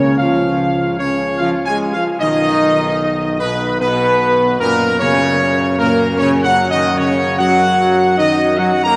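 A dark production bathed in a cathedral reverb with a 4.4-second tail gives this short classical brass passage a solemn, majestic air. A trumpet section sits up front carrying the melody, its tone shaded with light vibrato and a soft attack. Beneath it, a mellow French horn section and a trombone section with smooth tops hold sustained chords, while a distant, roomy tuba anchors the bass with a warm tone. Timpani struck with hard mallets sound articulate in the background during the first 1.0 s only. In a stately triple metre, the harmony moves from C# to B and settles on F#5 in this passage cut from a longer piece.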